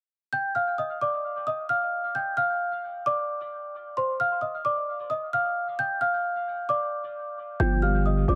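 In a half-time 4/4 feel, this melancholic, eerie trap fragment opens at 0.3 s with a bell-like, delicate celesta melody up front, trailed by dub echo and floating over unaccompanied space before a Dm chord arrives at 5.8 s. At 7.6 s a boxy, mellow dark grand piano and a growling, buzzy 808-style bass with a fast attack enter together on a G5 chord. A moderate spring reverb and an echo-heavy mix give the whole a haunted, hollow atmosphere.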